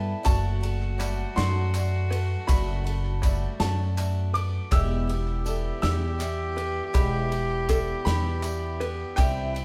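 A punchy, polished country drum kit drives this nostalgic, hopeful indie folk excerpt, coming in at 0.3 seconds with kick, snare and ride cymbal in a 6/8 lilt at 54 BPM, counted in dotted quarters. Just beneath it, a woody, dark upright bass sits up front with pizzicato notes in the low register. A brilliant upright piano carries the high melody through a digital delay, over a shimmering, octave-doubled twelve-string acoustic guitar picked with a swing feel. A reedy, nasal bowed cello with a period gut-string tone adds a second line, while a plunky, twangy open-back banjo fingerpicks arpeggios in the background, joined by crisp group handclaps and a jingly, close tambourine. The harmony moves from D/F# at 0.3 seconds to Em at 4.7 seconds, and the whole band sounds as though it is playing live together in one room with a moderate studio reverb.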